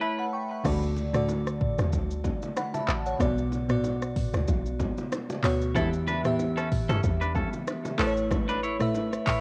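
A dry home cassette recording carries this hypnotic, smooth afrobeats excerpt at 94 BPM with a lightly swung sixteenth feel, where a crystalline, sparkling FM electric piano with chorus sits up front from the start, an electronic afro-pop drum kit with a deep kick, metallic hi-hats, handclaps, rim clicks, shaker, toms and crash arrives with a round, dark log drum bass at 0.7 seconds, ringing congas and bongos struck with hard hands sound distant in the background, and a bright, clean semi-hollow electric guitar riff with tape echo returns at 5.8 seconds over chords moving from D through Bm and Em back to Aadd9.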